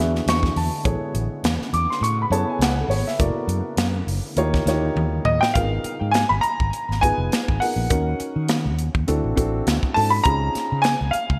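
A clear, worn concert grand piano with digital delay takes the melody at 5.3 seconds in this intense, driving electric jazz fusion piece, over a mellow, boxy baby grand's accompaniment, a round, amped fretless bass, a crisp fusion drum kit with a punchy kick, gated reverb and a fill at 5.0 seconds, and a very quiet, detuned sawtooth pad that holds sustained chords until 5.5 seconds, framed by a bright 1980s-style digital production with plate reverb.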